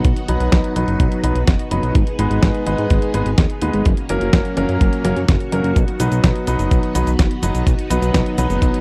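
Romantic and sunny, this italo disco excerpt rides a straight 4/4 feel over a B, G#m, F#, B progression. A gritty, thumpy electronic kick sits up front beside a 12-bit digital drum machine with a fat snare, hi-hat and cabasa, while a thick, detuned sawtooth bass with a wave-folded, saturated edge and a filter sweep holds the low end. A lush, mellow string machine pads sustained chords through ensemble chorus in the background, and from 0.3 seconds a clear, intimate baby grand piano adds stabs through a low-pass filter and tape echo, all captured in a dry, close 1970s-style studio sound.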